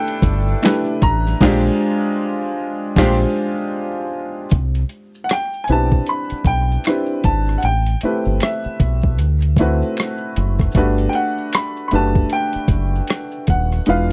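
Smooth and soulful, this neo-soul R&B groove moves at 77 BPM with a swung sixteenth feel, built on a gritty, overdriven boom bap sampler-style drum kit with a thumpy kick and a deep, round fingered electric bass, both up front. A woody, slightly detuned upright piano plays the accompaniment while a bright baby grand carries the melody up high, and a distant, roomy horn section with light vibrato adds stabs until 3.2 seconds; maracas and finger snaps sit low in the mix, and from 1.4 to 4.5 seconds the kick drops out as the band hits accents. The dry, close sound recalls a 1970s studio, and this passage, cut from a longer piece, moves through rich chords such as G69, Cmaj7 and Gmaj7.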